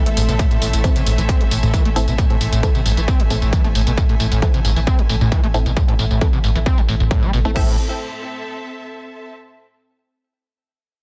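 Driving peak-time techno in A harmonic minor at 134 BPM, this industrial, relentless excerpt pumps a squelchy, screaming distorted acid riff over a distorted, up-front kick, an overdriven drum kit of hi-hat, tambourine, toms and crash in small room ambience, and a deep saturated sub bass, while crisp wave-folded chord stabs with a filter sweep enter at 0.8 s, an evolving analog drone sits behind, and a rich bowed string section with vibrato fades out through the first section before carrying on until 9.3 s.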